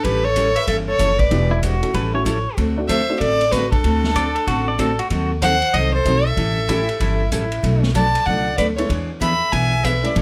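Western swing country in 4/4 at 190 BPM with a playful, down-home lilt, this cut features a rich, up-front bowed fiddle carrying the melody over a forceful, vintage clarinet second line, a full-bodied picked dreadnought acoustic guitar, a woody gut-string upright bass and a distant, roomy big-band drum kit, while a jangly, detuned honky-tonk upright piano joins at 1.3 seconds and a clean pedal steel guitar with slide and volume swells sings between 1.5 and 7.9 seconds, all set in light reverb.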